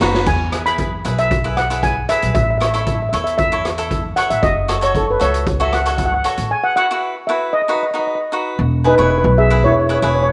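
Calypso in E major at 115 BPM, bouncy and carefree, opening on a drum fill from a small-room street-band kit with a boomy kick and dark cymbals that drops out at 6.5 seconds. A mellow, shimmering steel pan, played with soft rubber sticks, carries the lead up front from 0.3 seconds over crisp, picked cavaquinho and a woody pizzicato upright bass that also sits up front. The chords move from E through A and F#m to Bsus4 and B before landing on E6, with a moderate echo chamber reverb, in a fragment cut from a longer piece.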